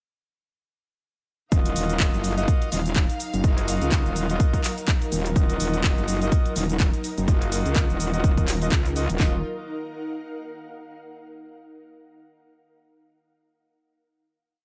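A short, gritty, swaggering bass house piece in Eb minor at 125 BPM with a swung sixteenth feel drops in at 1.5 seconds on an Ebmadd9 chord, with a punchy, overdriven drum kit driving a four-on-the-floor kick, cracking snare, claps, bright hats and shaker under an up-front, metallic, distorted FM wobble bass with changing wobble speed, while a tight vintage horn section pumps out syncopated chord stabs with delay and a very quiet, smooth studio string section sustains chords, before an ethereal, airy detuned pad that enters at 2.7 seconds holds the final chord alone until 11.1 seconds.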